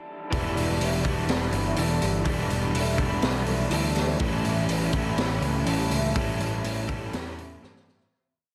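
From 0.3 seconds, a brooding, melancholic rock verse in shoegaze and dream pop style moves at 123 BPM in E dorian from Em11 to A7, with a raw garage drum kit up front playing a half big groove with a high-tuned snare, punchy kick and gritty saturation, a fuzz picked electric bass driving eighth notes, a crunchy overdriven guitar riffing in ringing chords through analog chorus, a lo-fi, slightly broken-up electric guitar through a small old amp trailed by reverse reverb, and a very quiet, shimmering, octave-doubled fingerpicked twelve-string acoustic guitar with audible finger squeak, set in light small-room reverb and a dense modern master, fading out from 6.2 seconds as a drum fill enters at 7.6.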